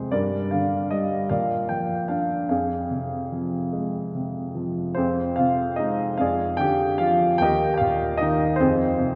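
Reflective and melancholic, this short lyrical classical passage for solo piano is cut from a longer piece and moves at a slow 50 beats per minute in 6/8 with a free, rubato feel. A baby grand piano in F dorian carries everything on its own from 0.0 to 9.2 seconds, its worn, present tone sitting up front with long sustain as it ranges from Eb2 up to G5. The harmony drifts from G minor through B-flat to F minor, and the phrase then returns, colouring F minor with an added sixth and ninth before passing through E-flat and settling back on F minor near 8.6 seconds. The instrument rings out in a church or concert hall, where a generous, wet reverb with a 2.6-second decay lets each chord hang in the air.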